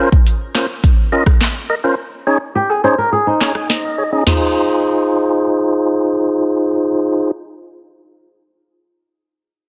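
Dancehall with a hypnotic, bouncy mood, cut from a longer piece and built on a straight 4/4 groove. A fat, lightly overdriven tonewheel organ carries the accompaniment from the start, its fast rotary speaker and sidechain pumping giving it motion, while a low-pass filter and a filter sweep shape the opening stretch up to 4.3 seconds. An up-front afro-pop drum kit with an electronic, produced character sits alongside it, pairing a deep kick and sharp snare with metallic hi-hats, handclaps, rim clicks, toms and crash cymbal, before it drops out at 4.4 seconds. A dark, fingerpicked flamenco guitar adds brief arpeggios between 2.6 and 4.1 seconds, softened by a low-pass filter and trailed by tape echo, as the organ plays a fill. The harmony moves from Bbmadd9 to Dbsus2 and then settles on Fm7 as the organ continues alone into the closing section. Light reverb and digital ambience surround a dense, heavily limited modern master.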